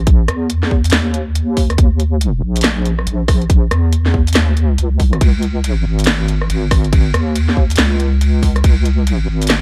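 A deep, soft wobble bass sits up front with a detuned square-and-sine tone, chorus and compressed sustain, anchoring this meditative, heavy deep dubstep fragment in a swung half-time feel, while a tight electronic kick punches until 8.7 seconds alongside a layered garage kit of cracking snare, warm hi-hats, rim clicks and crash cymbal, the drums carrying a small-room character inside a dark, dry production.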